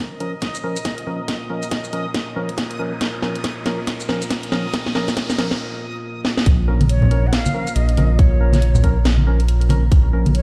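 Heavy and meditative, this deep dubstep excerpt moves with a swung, half-time feel and opens on a build-up carried by a moody ambient pad and a reversed, granular swelling texture, with an electronic riser joining in the background at 1 second. Hollow, organ-like stabs with lush chorus and dub echo sit over a garage drum kit with a cracking snare, hi-hat and shaker, plus a tight, tape-toned electronic kick, while a drum fill and a filter sweep on the stabs push toward a short break at 5.6 seconds. The drop lands at 6.5 seconds with a rumbling, detuned saw bass, up front and tube-saturated, joined by soft-handed congas. A breathy, reedy ney then carries the melody with vibrato and dub echo. It all sounds as if played on a big sound system in a bare stone room, and it is cut from a longer piece.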